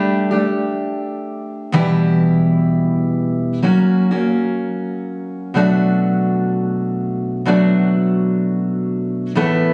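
A fingerpicked steel-string acoustic guitar plays alone, its jumbo body giving a full-bodied, up-front tone with audible finger squeak, moving through Gsus2, Em and F# before settling on Bm7 at 5.6 seconds. This slow, heartbroken pop fragment in B minor at 63 BPM, cut from a longer piece, sits in a wet recital hall reverb that lingers around the strings. The phone-in-the-room capture lends the sound an intimate, melancholic closeness.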